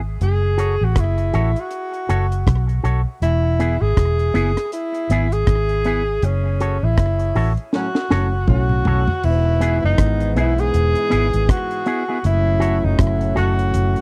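A round, foam-muted electric bass opens this sunny roots reggae excerpt, sitting dark, amped and punchy up front over a lightly swung sixteenth-note feel. Almost at once a deep drum kit joins with a high-tuned snare, tight kick, rim clicks, hi-hat, toms and crash, while a tenor saxophone carries the melody with light vibrato and a distant, roomy tone fed into dub echo. A clean, compressed electric guitar plays picked accompaniment through an envelope filter, also trailed by dub echo. The band hits an accent from 6.2 seconds, and at 7.7 seconds a warm, close-miked trombone section enters on a second line with its own dub echo as the drums play a fill. The harmony moves between F#m and E, and the dry, close 1970s-style studio sound with little reverb keeps the mix intimate.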